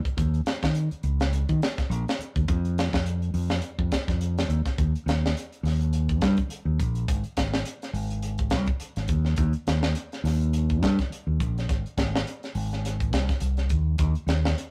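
A fingered electric bass carries the low end of this funky, driving afrobeat excerpt, sitting up front with a warm tone that sounds both direct and amped as it moves between Ab1 and Eb3. Alongside it, a tight funk drum kit, acoustic and recorded in a small room, plays hi-hat, kick and snare with a mid-forward sound, a high-tuned snare and a tight kick placed close to the listener. The groove runs at 104 BPM in 4/4 with a 56% swing on the sixteenths, giving the pulse a gentle lilt. The piece opens in one section and shifts to a second at 4.8 seconds, continuing until the drums stop at 14.7 seconds. The rough rehearsal-room recording carries light reverb and a warm saturation that adds to its raw, live character.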